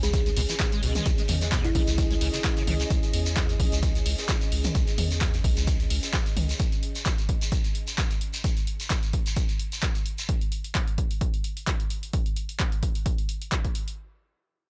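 A driving, trippy slice of acid house opens with its layers already rolling: a round, deep analog bass with sidechain pumping, a squelchy, resonant acid riff with chorus, and a woody kalimba melody ringing softly in the background through tape echo. An up-front electronic kick arrives almost at once, joined by tape-warm drum-machine handclaps, hi-hat and toms, a grainy, distant shekere, and a very quiet acoustic kit adding polished ride and snare. An ethereal, detuned pad with chorus, built-in reverb and sidechain pumping hovers over the groove with a slow attack and long release. The kalimba drops out by 1.8 seconds and the acid riff by 2.8 seconds, while the bass, pad and acoustic kit carry on until around 6.6 seconds. From there the kick, drum machine and shekere keep the swung pulse going, with the drum machine running to the end of the section at 14.0 seconds, all set in a dry, gritty hardware sound with studio reverb.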